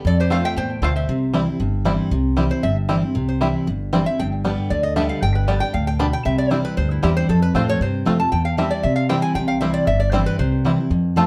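A bright, nasal lap resonator guitar, played with fingerpicks and a slide and given a slapback echo, carries the melody of this rustic, virtuosic bluegrass piece in C major at 232 BPM, stepping into a steel-bar solo from 2.1 s. A second, warmer resonator line sounds alongside it only until 1.8 s. Underneath, a full-bodied dreadnought steel-string guitar picks the accompaniment up front, a twangy, percussive banjo plays arpeggios, and a woody, thumpy pizzicato upright bass anchors the low end, all in a dark production with moderate studio reverb.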